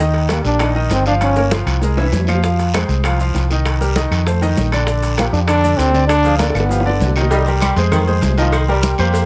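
A straight 4/4 salsa groove at 197 BPM drives this danceable, passionate C minor excerpt, with a round, dark hollow-body electric bass and an intimate grand piano, its action noise audible, up front over background congas, tight high-tuned bongos and cowbell, ringing distant timbales and agogo bells, woody claves, grainy maracas and a raspy guiro, while a clear solo trombone with light vibrato sings the melody at 0.3 and 5.2 seconds before a brilliant, punchy trombone section takes a second line at 7.3 seconds.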